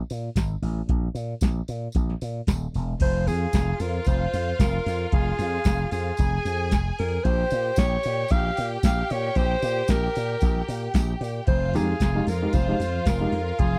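Over a straight 4/4 pulse, a soft vintage rhythm box with a deep kick, tonal snare, metallic hi-hat and crash cymbal drives this glamorous disco passage, its analog tone roughened by overdrive. A slap bass run through an envelope filter sits up front, growly and punchy, while a jingly tambourine shimmers in the background. At 3.0 seconds a breathy alto saxophone enters close and intimate, its scooped notes and soft subtone carrying the melody in a jazz style. A lush, bowed string section arrives with it as a second line, sounding focused yet distant. At 11.5 seconds a worn, slightly out-of-tune tine electric piano joins as lightly overdriven accompaniment, and the dry, close 1970s-style sound keeps every part present in this excerpt cut from a longer piece.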